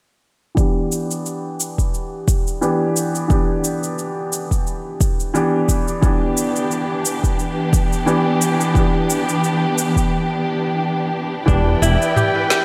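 Organic downtempo with a hypnotic, mystical feel, where a soft felt-muted upright piano pumps through a filter sweep and delay over a tape-warm afro-pop kit of cabasa, woody snare and toms in gated reverb, anchored by a deep, up-front electronic kick, until lush bowed symphonic strings join at 6.0 seconds and, after a break, a crisp fingerpicked kora and a growly, round fretless electric bass arrive at 11.5 seconds, all bathed in a wet hall and bright 1980s-style digital sheen.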